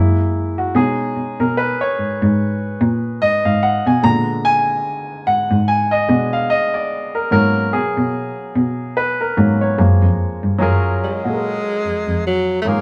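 A warm, smooth neo-soul R&B passage at 73 BPM in F# major, cut from a longer piece, with a lightly swung sixteenth-note feel and chords such as F#9, A#7b9 and G#m11. Up-front grand piano carries a solo through the first 10.6 seconds over an intimate, close bowed cello bass played sul tasto with a soft attack and light vibrato. At 11.0 seconds a breathy, punchy tenor saxophone enters with scooped notes and jazz-style vibrato, all captured by a band playing live in one room with light reverb.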